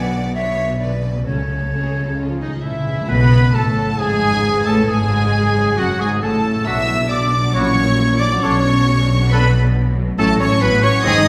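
A wet recital-hall reverb surrounds this urgent, dramatic passage, cut from a longer romantic orchestral movement with a rubato feel. Warm, smooth bowed violins carry the melody with vibrato, while a rich second violin section and a pure, crisp-attacked silver flute trace second lines in the background. Beneath them, a very quiet viola section fills out the accompaniment and a very quiet, ringing harp plays thumb-plucked arpeggios, while a dark, woody cello section joins the lush double basses on the bass. Round, soft-mallet timpani enter at 1.3 seconds with a fill into the second section, and from 2.4 seconds a clarinet and a vintage-toned oboe add further lines as a mellow French horn section holds sustained chords. At 3.1 seconds a clear, very quiet trombone section thickens those chords and a distant, roomy trumpet adds stabs over the changing harmony.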